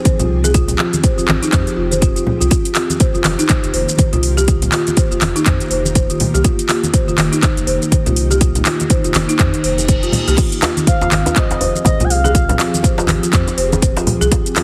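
A woody, dry marimba spins echoing arpeggios over a punchy, up-front kick in this driving afro house excerpt at 122 BPM in F minor with swung 16ths, joined by a house kit of metallic hi-hats, handclaps, shaker and crash, bright congas, a round sine sub bass and an ethereal, airy pad of sustained chords pumping against the kick, before a reverse cymbal at 9.6 seconds ushers in soft-handed djembe and, at 10.9 seconds, a smooth, dark sawtooth lead with vibrato, the whole mix carrying a heavily compressed, radio-like finish.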